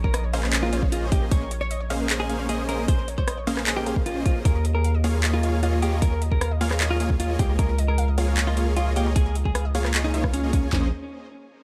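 A dry, close mix opens this excerpt from a lush, bittersweet future bass drop in Bb minor at 153 BPM with a half-time feel, moving through Bbm11, Eb9sus4 and Db69 chords. An up-front, deep 808-style bass with a fast attack and long decay pumps under a hard-clipped kick, sharp snare, handclaps and toms, while a second trap kit adds metallic hi-hats and rim clicks, both kits tape-toned and electronic. A dark, clean, picked electric guitar carries the melody through digital delay, a bright, wave-folded unison pluck ripples arpeggios through a phaser in the background, and from 0.3 seconds a huge, thick, detuned supersaw riff with vibrato and a sub octave pumps alongside them.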